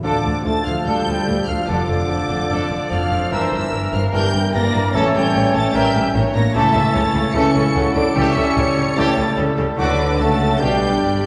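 A dramatic, urgent passage from a fast romantic orchestral movement in D minor, cut from a longer piece, opens at 148 BPM with nearly the full symphony orchestra sounding at once. A distant, intense violin section carries the melody high above, while a pure flute section, a mellow oboe, a mellow clarinet and a very quiet, focused second violin section trace supporting lines in the background. Beneath them a warm bassoon and, from 0.9 s, a smooth viola section fill out the accompaniment, as a mellow French horn section and a very quiet, vintage-toned trombone section hold sustained chords and a dark, roomy trumpet section adds stabs. The clear cello section and an expressive double bass section anchor the bass, and very quiet, close timpani strike twice, first at 4.9 s. The harmony moves from D minor through a tense dominant passage on A before arriving on D, all set in the wet reverberation of a recital hall.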